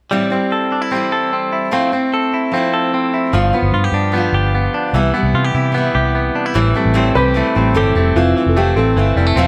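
A picked steel-string acoustic guitar with a full-bodied, finger-squeaking tone opens this restless, wistful indie pop excerpt alongside a bright, twangy clean electric guitar playing arpeggios through analog delay, moving over seventh chords in a straight 4/4 feel. A round, punchy, foam-muted electric bass joins at 3.3 seconds, and at 7.2 seconds a dark, woody upright piano, slightly detuned and with audible action noise, takes the melody with its own analog delay. The parts sit in a small, moderate room with a faint mains hum beneath them.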